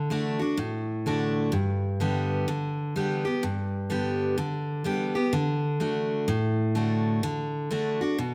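A solo picked steel-string acoustic guitar opens this short country excerpt, its jumbo body giving a full-bodied, bright tone with the crispness of fresh strings, sitting up front in the mix. The mood is heartfelt and easygoing at 126 BPM in 4/4 with a gentle swing on the eighth notes, moving through D, G and back to D in G major across its 8.3 seconds. Close, detailed miking captures the guitar in a moderate recital-hall reverb.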